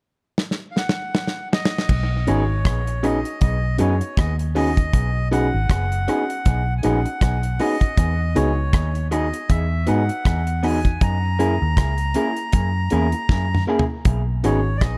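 A reedy, breathy melodica carries the tender, romantic melody through tape echo from 0.7 seconds, over a damped 70s drum kit that opens with a fill at 0.4 seconds and sits up front with a tight kick, medium-tuned snare, rim clicks and dark cymbals. This is a lovers rock reggae excerpt at 79 BPM in B major with a lazy 16th-note swing. A round, foam-muted electric bass enters at 1.9 seconds as the chords move from B6 through Emaj7 and F#9, joined by a lush, chorused FM electric piano with a soft pad layer and slightly broken-up, lo-fi guitar stabs through a small old amp, all in a dark production with a small-room reverb.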